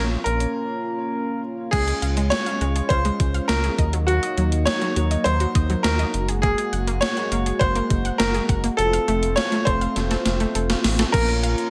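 A shimmering, chorused pulse-width pad and a deep, round analog bass open this melancholic, nocturnal synth-pop excerpt in Bb minor at 102 BPM, joined almost at once by an intimate baby grand piano carrying the melody with audible action noise up front. A gated 80s digital drum machine brings a thumpy kick, overdriven gated-reverb snare, hi-hat and crash, with a break from 0.6 to 1.7 seconds and a fill from 10.0 seconds. From 1.7 seconds a detuned analog pluck adds chorused, delayed arpeggios in the background as the chords move from Db through Ebm and Gbadd9 to F before returning to Bbm, all set in a light digital ambience.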